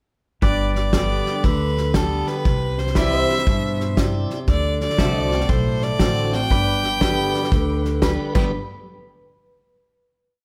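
A short, easygoing and heartfelt honky-tonk country piece opens with a clear, focused fiddle singing song-like phrases with light vibrato. Beneath it play a natural drum kit with a train beat groove, fat snare and punchy kick; a woody, thumpy upright bass with two-beat root and fifth lines and walk-ups; a bright dreadnought acoustic guitar alternating bass and strum with bass runs; and clean pedal steel chords that glide and swell. A piping tonewheel organ joins at 0.9 s, sitting in the background with backbeat chords through a slow rotary speaker, and at 7.0 s a metallic, nasal lap resonator guitar slides in with bluesy licks before the final hit at 8.5 s, all in light reverb.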